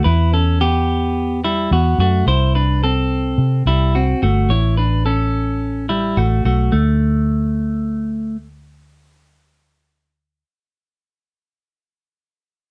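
A straight 4/4 pulse carries this nostalgic, youthful slice of jangly indie pop, taken from a longer piece, with a bright, twangy clean electric guitar picking compressed arpeggios through a slapback echo over Em, Cadd9 and A before settling on D5 at 6.7 seconds. Beneath it, a vintage muted fingered electric bass sits up front with a dark, round, punchy, foam-muted tone, carrying on alone after the guitar stops at 8.4 seconds until 10.4 seconds. The sound is dry and close, in the manner of a 1970s studio recording.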